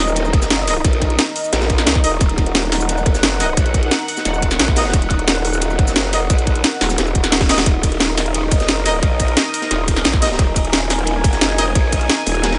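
A light reverb and small-room ambience frame this short, dark technical drum and bass excerpt, with the top end capped at 10.4 kHz and an aggressive, futuristic mood in Eb minor at 176 BPM. A growling, wobbling growl bass sits up front, saturated and compressed with overdrive and chorus, its formant-filtered tone pumping under the sidechain. The main drum and bass kit drives the track with a cracking snare, bright hats, ride, and shaker, all overdriven and layered with a tight, up-front electronic kick. Behind them, a crunchy breakbeat kit adds a gritty, rolled-off acoustic texture of ride and medium-tuned snare, and a drum fill lands at 7.4 seconds as the drop restarts at 7.7 seconds. A sweeping resonant pad holds sustained, detuned sawtooth chords with a filter swell and chorus, pumping under the sidechain, while a bright brass ensemble fires classical-style stabs through delay from the background.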